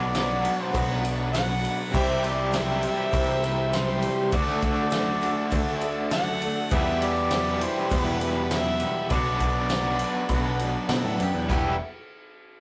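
An overdriven, double-tracked garage guitar sits up front with a raw, picked riff and a tremolo shimmer, setting a reflective, dusty tone for this folk rock and heartland rock passage cut from a longer piece. A mellow, distant harmonica carries the melody as a roomy pop-style solo line, while a twelve-string acoustic guitar with fresh strings adds octave-doubled picking in the background. Beneath them, a growly, direct electric bass and a vintage drum kit with a fat snare and punchy kick drive a straight 4/4 feel, with crash and ride cymbals and a very quiet, grainy egg shaker filling out the rhythm. A reedy tonewheel organ with slow rotary speaker and chorus vibrato holds sustained chords far back in the mix, and a woody mandolin joins with a second line at 10.0 seconds. The progression moves from Bm through C, D, Em and back to Bm before settling on Em, all captured in a rough rehearsal-room recording with a wet studio ambience.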